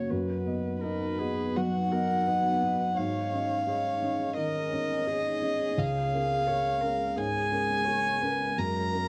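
Flowing in a loose, rubato 4/4, this short excerpt of neoclassical piano and strings feels tender and hopeful. A lone violin, bowed sul tasto with a pure, floating tone, carries the melody up front, while a single viola adds intimate, vibrato-laced accompaniment and a felt-muted upright piano supplies mellow, vintage support. Behind them, a deep analog pad with slow attack and chorus sustains moody harmony, and moderate studio reverb gives the dark production a soft sense of space.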